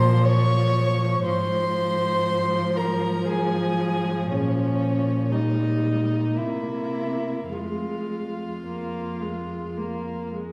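In a rubato 3/4 at 51-61 BPM, this melancholic, elegiac string quartet movement in F minor sets a dark, sul tasto violin melody with light vibrato above a second violin line, a rich, floating viola accompaniment and an airy-bowed cello bass, all four bowed with soft attacks and heard together from 0.0 seconds in a reverberant recital hall, with the chords moving from Bbm through Eb/Bb and C7 to settle on Fm at 7.5 seconds before this cut from a longer piece ends at 10.5 seconds.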